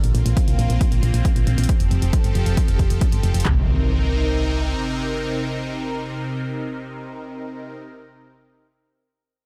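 A dry mix carries this emotional, driving uplifting trance excerpt at 136 BPM in C dorian, where a lush, detuned supersaw pad with phaser and sidechain pumping sustains Bbsus2 and Fadd9 chords into Cm7, a round, dark, up-front FM bass pumps beneath, an analog drum machine and an electronic hi-hat, both overdriven, hit with a punchy kick, handclaps and toms, and a background impact arrives at 3.5 s as the second section begins.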